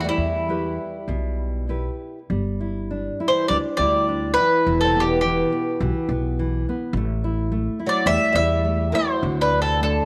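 A picked bowl-back mandolin with double strings carries the melody up front in this mournful, passionate fado-style ballad in G major, taken at 103 BPM with a rubato feel, while a dark, boxy, shimmering twelve-string acoustic guitar adds an octave-doubled second line, a full-bodied nylon-string guitar fingerpicks the accompaniment with audible finger squeak, and a woody pizzicato upright bass anchors the low end, the ensemble sitting in a moderate plate reverb in this short cut from a longer piece.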